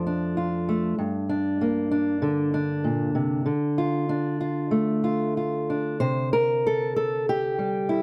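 A fingerpicked old ladder-braced acoustic guitar plays alone and up front with a dark, woody tone from its old strings in this gentle, nostalgic folk excerpt, moving loosely around 96 BPM in 4/4 from F6 through Gm and Dm before a new section opens on Csus2 at 6.0 seconds, all set in a moderate studio reverb.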